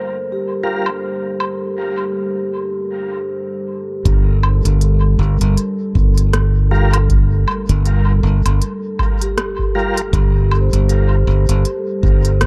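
Ambient dub with a meditative, hazy mood, cut from a longer piece and resting on a single Gm7 chord held by a deep, dark, detuned pad with chorus and its own reverb. A ringing, metallic vibraphone with medium mallets plays arpeggios through gritty 12-bit sampler texture and dub echo, a smooth tonewheel organ with chorus vibrato and key click adds echoing stabs, and a tape-warm, low-pass filtered electronic kit of crisp hats, rim click and woodblock enters at 0.9 seconds with swung sixteenths. At 4.1 seconds a bright, growly fingered electric bass arrives up front, joined by a dry, deep analog kick sitting in the background, all within an echo-heavy mix carrying little reverb.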